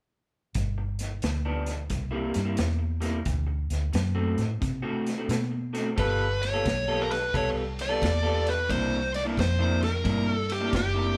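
Soulful and gritty, this electric blues shuffle excerpt moves at 88 BPM in 4/4 with a swung eighth-note feel, played live by a band in one room with moderate reverb. A vintage drum kit with a punchy kick and dark cymbals, a round, foam-muted fingered bass, and a twangy, slightly broken-up guitar riff through a small old amp with spring reverb work through G7, C7 and D7 before the music moves into G mixolydian at 6.0 s. There a smooth, overdriven lead guitar enters up front with the melody as the chords shift to G9 and C9.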